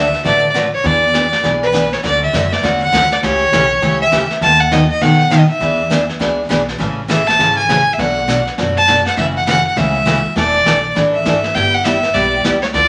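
Country western swing in A major at a brisk 202 BPM with a playful, down-home swing, led by a clear, smooth bowed fiddle with light vibrato up front, over a bright, full-bodied picked steel-string acoustic guitar with audible finger squeak, a woody, thumpy pizzicato upright bass and a vintage brush kit with a rolled-off top entering at 0.1 seconds, all set in a wet large studio reverb as the chords move from D69 through Dmaj7, B7/D#, Bm7 and E7sus4 to G6 in this short 12.9-second cut from a longer piece.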